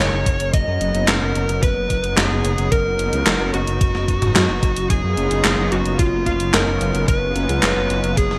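A bright, 1980s-style digital production with light reverb gives this short synthwave excerpt a romantic, uplifting glow in a straight 4/4. Up front, a dark, fuzz-distorted electric lead guitar carries the melody, its picked, compressed tone trailed by delay, while a soft, pure FM bell adds a very quiet second line with chorus and a long, decaying release. Beneath them, a lush, thick unison pad with slow attack, a nasal edge and chorus sustains the chords, pumping with sidechain. The bass is a deep, rumbling detuned saw, beating and up front, and it also pumps with sidechain. At 0.3 s a thumpy electronic kick and an up-front gated 80s drum machine enter, adding handclaps, hi-hat, toms and a gated-reverb snare in studio ambience, over harmony that moves from F#6 to Bmaj7/F# and then to C#7/F#.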